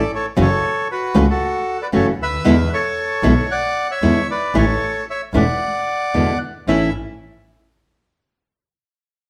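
A rubato tango in 4/4 at around 114 BPM, this playful, elegant fragment in A major moves through F#m7, E7 and A, with every part playing from the start until 6.9 s. A reedy bandoneon carries the melody up front, while a fingerpicked classical nylon-string guitar, also close and present, supplies the accompaniment. A single bowed double bass adds a biting, earthy low line with light vibrato, and the live band sits in a stone room with a wet reverb.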